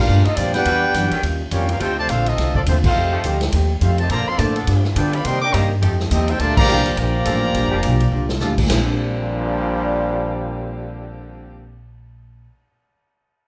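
Big band swing in Bb major at a bright 209 BPM, this joyful excerpt puts a brilliant, tight trumpet section up front over clear, soft-attacked trombones, a woody pizzicato upright bass, a dark, clean hollow-body guitar and a punchy, natural drum kit, while a bright saxophone section holds sustained chords in the background, with band accents at 2.8 and 6.5 seconds and a drum fill at 8.1 seconds before the trumpets drop out at 8.4 seconds, all in a large studio room.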